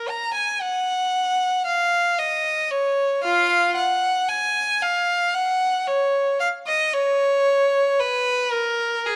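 A solo violin carries this brief classical fragment, a baroque-style suite movement for unaccompanied violin, playing alone from 0.0 to 9.2 seconds. The mood is introspective and grave, moving at a slow 57 BPM in 3/4 with a rubato feel that lets the phrasing breathe. The single player's bowed tone is rich and smooth, colored by vibrato and kept even across a range from F4 to Bb5, sitting up front in the sound. Close, detailed microphones capture the instrument inside a moderate recital hall reverb, while vinyl crackle lends the recording an aged patina. Cut from a longer piece, it offers just a short glimpse of the movement's sober character.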